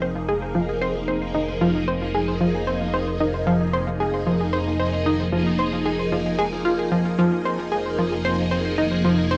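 This brief ambient excerpt from a longer piece opens at once with a phased string machine holding sustained chords beside an analog pluck riff, both brilliant and up front, while a fat analog bass sits low beneath them. The mood is cosmic and hypnotic, in a straight 4/4 that rests on a single minor chord for the full 9.4 seconds. The string machine has a swirling, vintage sawtooth tone with a slow attack and long release, coloured by ensemble chorus, a phaser, cassette tape and plate reverb. The pluck is round, with a sub octave, fast attack and short decay, treated with chorus, 12-bit sampler grit, cassette tape and delay. The bass is thick and detuned, with an evolving sawtooth character that sustains underneath. The piece was recorded at home on cassette, in a wet studio reverb with a 0.6-second decay.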